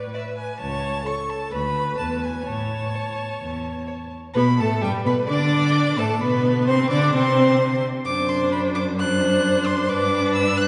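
Bathed in a lush church reverb with a softened top end, this short cut from a graceful, spirited classical-period string quartet movement moves briskly at 130 BPM in 4/4, its close first violin singing a smooth, even melody with warm vibrato high above a focused, distant second violin line and rich viola accompaniment, while an up-front, expressive cello anchors the bass with portamento as the harmony shifts from A major to G major at 4.4 seconds.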